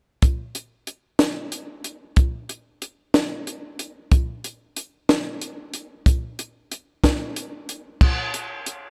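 Folk in 6/8 with a straight feel, this short passage, cut from a longer piece, carries a wistful, bittersweet mood. The only part is a compact cocktail drum kit, playing from 0.2 to 8.8 seconds with crash cymbal, hi-hat, kick drum and snare drum. The kit sounds acoustic and dry, sitting up front in the mix. Its dark cymbals contrast with a high-tuned snare, while the kick lands with a punchy thump. Light reverb and a dusky, warm production wrap the single section, giving the drums a close, intimate character.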